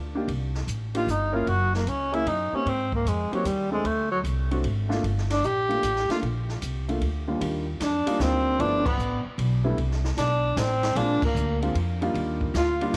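A breathy tenor saxophone carries the melody from 1.0 seconds, sitting up front yet distant and roomy, its subtone, vibrato, soft attacks and scooped notes given a touch of tape echo. This is a moody, cool small-group swing and bop piece in G minor, cut from a longer performance and moving at 152 BPM in a swung 3/4. A woody, thumpy pizzicato upright bass, a warm grand piano with short sustain and an open acoustic kit with dark cymbals and a boomy kick support the horn in light small-room reverb, while a very quiet, close-miked trombone adds a second line from 7.8 seconds, just before a band accent at 8.8 seconds.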